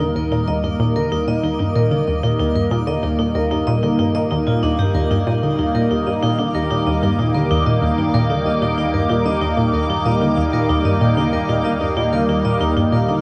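Bathed in a huge, wet reverb and the warble of worn cassette tape, this luminous, expansive piece of sequencer-driven space music moves at 94 BPM in Eb major, where a swirling phased analog pad holds sustained chords up front, a metallic hard-mallet vibraphone rings out delayed arpeggios, a round, nasal analog pluck repeats its riff, an analog drone sits low in the background, and a twinkling granular texture fades in over the full 13.2 seconds of this fragment.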